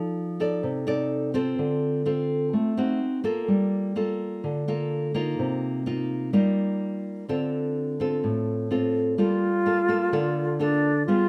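Smooth and melancholic, this short bossa nova fragment from a longer piece moves at 126 BPM in G minor. An up-front nylon-string guitar plays fingerpicked classical accompaniment through chords such as Dm7, Gm9 and Cm7. At 9.2 s a bright alto flute enters with an airy, expressive second line, its vibrato and crisp attack set in a wet studio reverb that gives the rough home-demo mix its character.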